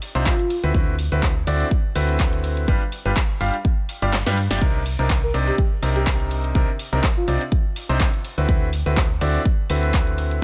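This piano house excerpt moves at 124 BPM in 4/4 with a light 16th-note swing, driven by an up-front, layered electronic kick and a dry, punchy analog drum machine carrying handclaps, hi-hat, snare and crash cymbal. The kick drops out from 4.1 to 4.6 seconds while a drum fill takes its place, then returns until 10.0 seconds. A round, dark FM bass with a fast attack and a decaying tone sits heavily underneath, pumping with the sidechain alongside a brilliant grand piano riff whose long sustain, audible action noise and tape echo give it an intimate, polished presence. An airy, dreamy lead built from detuned sine voices with a noise layer, chorus, vibrato and tape echo appears briefly at the start and again from 5.2 to 7.4 seconds. Harmony shifts through Cmadd9, D13, G7 and Cm9, giving the bittersweet, soulful mood a gentle ache, all set in a digital ambience.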